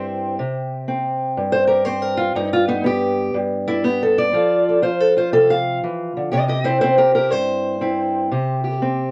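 A fingerpicked steel-string parlour guitar, dark, boxy and up front, carries this rollicking, gritty short excerpt of acoustic country blues in C major at 121 BPM with a swung 4/4 feel, moving through C, G and F back to C across 9.1 seconds in a dry, close 1970s-style studio sound with light reverb.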